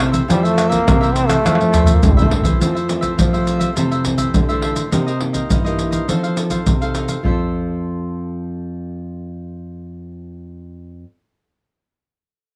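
Close, dry and detailed, this festive, playful samba-choro excerpt at 103 BPM in F major opens with a brilliant, jazz-style trombone solo with vibrato from 0.3 to 2.3 s, over a vintage, band-limited percussion section of pandeiro, tamborim, maracas and deep surdo played with soft hands, which adds a drum fill and then drops out at 7.4 s, while a crisp picked cavaquinho, a fingerpicked nylon-string guitar in the background and a full-bodied, thumb-plucked nylon-string guitar with finger squeak playing the bass line carry the Fmaj7, Cm7 and F7 changes.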